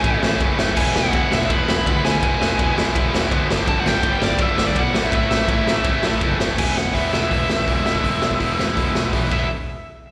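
Punk rock, upbeat and rowdy, cut from a longer piece and heard as a live gig through a venue's PA in a small room with recital-hall reverb, where a raw, boomy garage drum kit with dark cymbals sits up front, a fuzzy, punchy picked bass drives underneath, two bright distorted guitars churn riffs in the background with slapback echo, and a dark, smooth overdriven lead guitar carries the melody through tape echo, all moving through A, E and G chords before a shift at 6.6 seconds.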